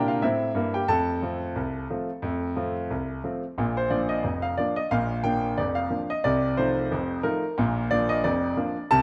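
A clear concert grand piano carries this jaunty, lively ragtime fragment alone, its smooth, vintage tone pairing a deep bass with short sustain and sitting up front in the mix. The lilting swung feel in two moves through a brief opening passage before a second section arrives at 3.6 seconds, settling home on a closing chord at 7.6 seconds. A lush hall reverb surrounds the instrument, though the overall sound retains the rough character of a home demo, and the clip is cut from a longer piece.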